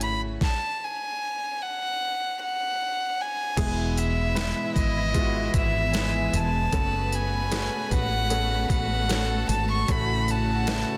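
Tender and heartfelt, this pop ballad moves at an unhurried 76 BPM in E major, a short section cut from a longer piece. A dark, intimate solo violin carries the melody up front, its airy, sul tasto bow and light vibrato giving the line a soft, close, slightly boxy voice. Beneath it, a clear concert grand piano supplies polished accompaniment with deep bass and short sustain, while a lush string section holds rich chords from a distance. A woody, round fretless electric bass and a tape-warm, smooth R&B drum kit, with its knocking kick, deep snare and smooth hats, sit up front to ground the groove. At 3.6 seconds the harmony opens onto Emaj7, moving through F#madd9 toward A6, and a pure, floating violin section enters in the background with a second line. Light studio reverb surrounds the parts, and the master is dense and heavily limited.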